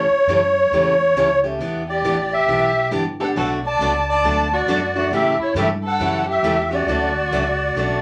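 Jazz manouche in a playful, swinging mood, this excerpt has a reedy, shimmering musette accordion carrying the melody up front over a bright, boxy picked steel-string acoustic guitar and a woody pizzicato upright bass, while a bowed violin enters at 1.9 seconds with an expressive second line full of vibrato and portamento, inside a wet studio ambience.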